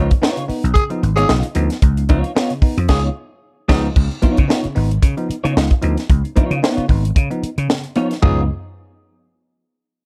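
Funk at 112 BPM in 4/4, this playful, strutting clip sits in Db mixolydian with a 16th-note swing and opens on a Db9 chord. A tight, dry funk drum kit leads the mix up front, its high-tuned snare, tight kick and bright cymbals joined by hi-hat, crash and toms, while a punchy, growly vintage slap bass sits just as forward. A clean, compressed electric guitar plays fingered accompaniment colored by ensemble chorus and plate reverb, and a bell-like tine electric piano adds direct, sparkling stabs with its own plate reverb. A raspy tenor saxophone with light vibrato enters at 0.7 seconds with a gritty second line on Ab4, drops out at 3.8 seconds, then returns briefly at 8.2 seconds. The band hits a shared accent from 2.9 to 4.0 seconds, and the whole piece carries a dark production under light reverb.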